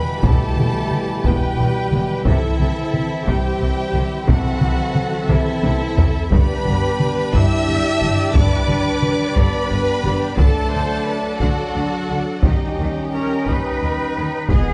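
A moderate concert hall reverb surrounds this dark, relentless cinematic film score excerpt, cut from a longer piece and moving at 59 BPM in dotted quarters in 6/8, tuned to A4 = 436 Hz. A rich, focused violin section carries the bowed melody while a second, expressive violin section plays a background line, with a smooth, even viola section filling in the accompaniment and a distant, lush string section holding sustained chords. Underneath, a cello section and a clear double bass section anchor the bass, and a clear trombone section and a dark, roomy French horn section sustain chords, all set back in the mix. A taiko ensemble struck with hard sticks plays a drum fill from 5.3 to 6.3 seconds, while the harmony moves from E minor through C, G and D to a tense D#7. A trumpet section adds stabs from 13.1 seconds, and at 14.5 seconds a huge impact lands with a very quiet, round timpani stroke played with soft mallets.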